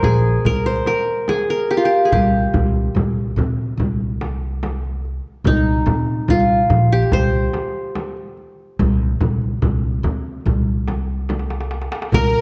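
A Turkish makam ensemble opens together in a soulful, melancholic mood, with a plucked qanun carrying the melody up front, its bright-edged triple-string tone touched by a slapback echo. An upright bass plays pizzicato beneath it on woody, thumpy gut strings, while a darbuka with a clay shell and natural skin, played with soft hands and given a compressed, saturated color, sits alongside a deep, large frame drum. The groove is a straight 4/4 feel, and the drums play a fill from 11.3 to 12.1 seconds. Just at 12.1 seconds a distant bowed violin section enters on a single floating, pure Bb4 with a soft attack, before this excerpt cuts off. The sound is dark and warm, set in a moderate recital hall reverb.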